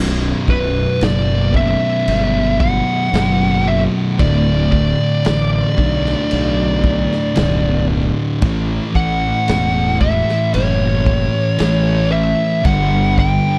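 Stoner and doom metal with an ominous, heavy mood, cut from a longer piece in a dry, close 1970s-style studio sound, where two dark, picked fuzz guitars grind out a riff in the background over a growly, overdriven fingered bass that sits up front with punchy tube-saturated weight. From 0.5 seconds a compressed fuzz lead guitar carries the melody up front, its tone colored by tape echo, while a raw garage drum kit with a punchy kick, medium-tuned snare and crash cymbal stays in the background with a rolled-off top. The chords move from B5 through D5 and A to G5 at 12.7 seconds.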